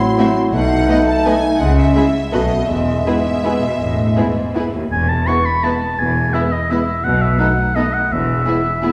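This is a classical orchestral ballroom waltz, a short sweeping and festive fragment cut from a longer piece, moving in three with an uneven, rubato lilt. A focused, close violin section carries the bowed melody with vibrato, while a second, softer-edged violin section sings a lush line behind it. Violas and French horns fill the middle, the strings smooth and even, the horns mellow and tight as they hold sustained chords. Cellos and double basses lay down a rich bowed bass, the cellos heard from a distance. Early on, a clear clarinet adds a second line and a distant, roomy bassoon accompanies it; both stop at 4.7 seconds, and an up-front oboe with light vibrato takes over the second line from 4.9 seconds as the opening phrase returns. A wet scoring-stage reverb places the orchestra further back in the room, and the harmony circles back to the home chord at the close.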